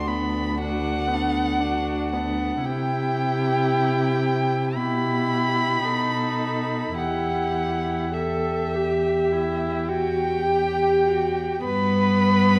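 A slow, rubato 4/4 pulse of 50-59 BPM carries this yearning, elegiac E minor string quartet movement, cut from a longer piece, where a muted first violin sings the veiled melody up front with vibrato, a second muted violin adds a smooth portamento line beneath, a muted viola supplies soft-attacked accompaniment, and a dark, muted cello holds the bass with light vibrato, all within a recital hall's reverb over chords moving from Bm/D through C, Em/B and B7 to Em and a closing G at 11.7 seconds.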